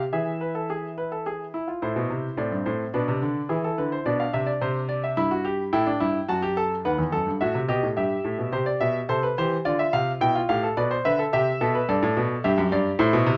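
A solo concert grand piano opens this short cut from a longer baroque-style three-part fugue, its smooth, vintage tone sitting up front with a deep bass and light reverb around it. The mood is lively yet stately at 107 BPM in a straight 3/4, with the harmony moving through minor chords such as Am, Bm and F#m before settling into C major from 8.5 seconds. A closing turn of C, Dm7, G7 and C brings it to a G chord by 13.4 seconds.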